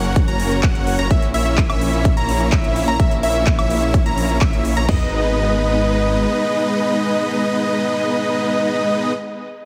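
A straight 4/4 pulse at 127 BPM carries this euphoric, powerful festival progressive house excerpt in G# minor. A tape-warm big-room drum kit of punchy kick, crash, toms, crisp hats, handclaps and woodblock fills the drop until about 5.0 s. A huge, dense compressed supersaw riff and a bright, catchy plucky unison lead playing arpeggios, both carrying tape echo, pump with sidechain over a thick detuned saw bass with chorus that stops at 6.3 s, while a smooth studio string section holds sustained chords in the background, with the harmony moving from F# to A#dim before settling on G#m at 4.9 s, all under light reverb and a heavily compressed radio sheen.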